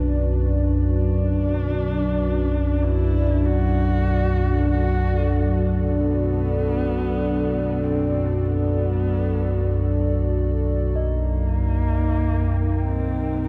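A detuned, sawtooth-edged analog drone sits up front in this vast, ominous dark ambient fragment, its lush chorus swirling beneath a deep, wave-folded analog pad that holds chorused chords moving from Bm to D# at 11.0 s, while a husky, bowed horsehead fiddle with vibrato and portamento fades in on a delayed melody and a ringing, metallic bronze singing bowl fades in from the background, inside a moderate cathedral reverb.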